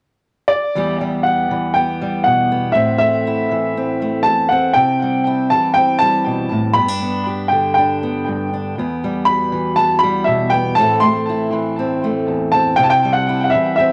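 Recorded at home on cassette in a small, moderately reverberant room, this stirring, bittersweet folk piece in E minor moves at 120 BPM in a straight 4/4, with a brilliant, up-front upright piano carrying the high melody through tape echo from 0.5 seconds while a woody, fingerpicked steel-string acoustic guitar on old strings accompanies from 0.8 seconds over a cycle of Emadd9, Am, C and G.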